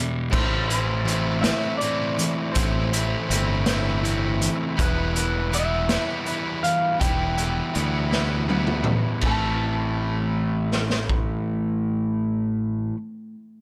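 Quiet-loud alternative rock in a dark, angsty 6/8 at 54 BPM in A minor, moving from Am to Em and back to Am. A crunchy, bright overdriven guitar riff and a raw garage drum kit, with its boomy kick, gritty saturation and pumping small-room sound, sit up front. Around them are a growling, overdriven fingered bass, a twangy, slightly broken-up electric guitar melody through a small old amp, and a very quiet, woody steel-string acoustic guitar picking arpeggios on old strings. A drum fill at 8.1 seconds leads into a new section at 9.2 seconds, and the drums stop at 11.3 seconds in this cut from a longer piece.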